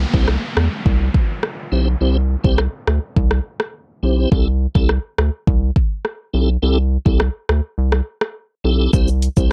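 A round, dark analog bass with a quick filter pluck opens this bouncy, summery dancehall excerpt in C major at 104 BPM, alongside a brief electronic downlifter that ends at 4.3 seconds. A produced afro-pop kit of deep kick, warm hi-hats, rim click and shaker joins up front with a piping, lightly overdriven tonewheel organ carrying chorus vibrato, key click and a slow rotary speaker, as the harmony moves from C to Am7 and back. The kick drops out from 7.8 to 8.9 seconds, and the dry mix has a worn cassette character with warbly pitch drift.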